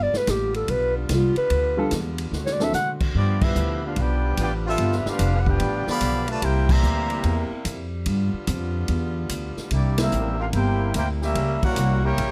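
This energetic big band swing excerpt opens on a breathy, whispered clarinet solo up front, backed by woody pizzicato upright bass, sustained saxophone-section chords in the background and a punchy drum kit, with a brief baby grand piano figure at 1.8 seconds and a drum fill at 2.3 seconds. At 3.2 seconds the trumpet section takes over the melody with light vibrato and a soft attack, while a brilliant, tight trombone section carries a second line beneath it. The full band hits accents at 6.6 and 9.9 seconds, and the sound is close and detailed with little reverb.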